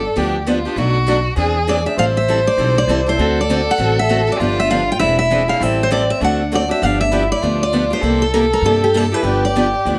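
A bright, full-bodied steel-string acoustic guitar carries the melody up front, finger squeaks audible, in this charming, swinging fragment of jazz manouche in 4/4, cut from a longer piece. An expressive bowed violin adds a second line with vibrato and portamento, while a woody, thumpy pizzicato upright bass on gut strings sits up front and a boxy parlour-style picked guitar enters at 0.2 s to comp through changes such as G7, Eaug7, Am7 and D7. Moderate studio reverb surrounds the quartet, and the lead guitar drops out at 9.7 s as the others carry on over a closing C7 to G7.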